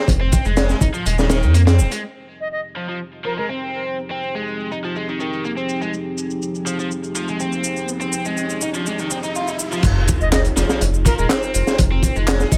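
Heard in a small room ambience, this funky, energetic breakbeat cut from a longer piece moves at 123 BPM in a straight 4/4, in F minor tuned to A4 = 444 Hz, opening on an Fm7 chord. An overdriven, double-tracked electric guitar riff runs throughout, bright and compressed, softened by a low-pass filter and a digital delay. Layered, tape-warm electronic shaker and handclaps, each with its own low-pass filter, play under it the whole way. Up front, a gritty breakbeat kit with a punchy kick, a high-tuned snare and dark cymbals pairs with a thick, tube-saturated sub bass; both play only through the brief intro and return at 9.8 s for the drop. From 2.0 s, a moody, detuned analog pad holds sustained chords with chorus and sidechain pumping, while an airy, reedy jazz flute with vibrato and an old record sound adds short melodic phrases at 2.4 s and again later. A filter sweep on the drums and a riser in the background build toward the drop, where a sub drop and an impact land.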